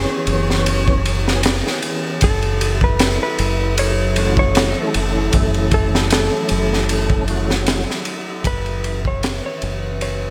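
A crunchy breakbeat kit sits up front from 0.3 seconds, with a punchy kick, a high-tuned snare and dark ride cymbal, all saturated and rolled off at the top under a gated reverb. This cinematic, melancholic trip hop excerpt moves in a lightly swung 4/4. A deep dub fingered bass holds a single round low note throughout. Over it, a clean lap steel guitar carries the melody with fingerpicks and slide, roughened by vintage 12-bit sampler grit and tape echo. A mellow, percussive tonewheel organ with key click, chorus vibrato, tremolo and a fast rotary speaker plays the accompaniment until 7.8 seconds, while a warbling, detuned tape-like pad sustains C#m7/F# and F#m7 chords in the background and a flickering, grainy texture enters at 2.4 seconds. The bright 1980s-style digital production has light reverb and studio ambience, and the cut from a longer piece fades out from 6.4 seconds to its close.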